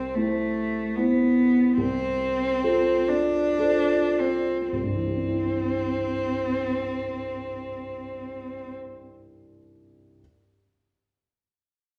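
Heard from further back in a stone room with a wet, lingering reverb, this serene, lyrical romantic duo for cello and grand piano moves in a rubato 3/4 between 49 and 75 BPM in C major, slowing through its opening 4.7 seconds as the harmony shifts from C to F over C and back to C. Up front, a single bowed cello sings the melody in a rich, expressive voice, with vibrato, soft attacks and portamento. Beneath it, the dark, mellow piano accompaniment reaches down into a deep register and carries on alone after the cello stops at 8.7 seconds, in a passage cut from a longer piece.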